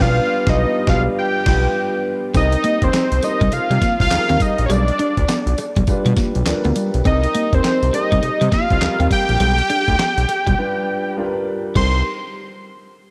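The recording sounds dreamy and soaked in plate reverb, a confident, punchy slice of new jack swing R&B cut from a longer piece, moving at 102 BPM in 4/4 with a 62% sixteenth-note swing in C minor. A fat, detuned sawtooth lead carries the melody up front with vibrato and analog delay, while a thick analog bass with a filter sweep sits just as far forward beneath it. A dark, mellow concert grand piano bathed in lush chorus fills in the accompaniment, and a gritty, compressed sampler-style drum kit enters at 0.5 seconds with a thumpy kick, fat snare, hi-hat, handclaps, tambourine and crash cymbal. At 2.3 seconds a clean, picked electric guitar riff joins in the background with subtle chorus, alongside a very quiet metallic cowbell. The harmony alternates between G7/B and Cm7, with band accents at the opening and a couple of brief breaks.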